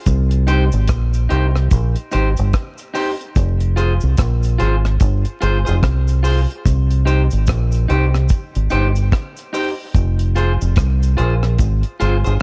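Vinyl crackle and a dark small-room production frame this laid-back, meditative roots reggae excerpt, where a round, up-front fingered electric bass and a dry drum kit with a tight kick, hi-hat and rim click anchor a swung groove, a background cabasa adds faint texture, and a clean, picked electric guitar with dub echo enters at 0.5 seconds over a slow alternation between C minor and F minor.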